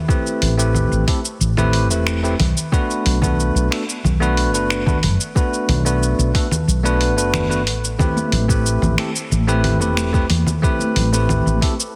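Sunset chillout in A dorian at 91 BPM, this relaxed, straight 4/4 excerpt moves from Am9 to Bm7 at 2.4 seconds and returns to Am9 at 8.0 seconds. A bell-like tine electric piano, bright, clean and up front, carries the accompaniment in the middle register, colored by delay. Beneath it, a woody fretless electric bass sounds dark, round and hollow-bodied, colored by a subtle chorus. The dusty soul sampler-style drum kit brings gritty, compressed finger snaps, hi-hat and shaker, with soft clipping on the snare, while an overdriven electronic kick adds a soft, produced thump. Very quiet congas with a thick-skinned, high-tuned, vintage tone join at 8.2 seconds, and a lush hall reverb surrounds the dense, heavily limited mix with a warm glow.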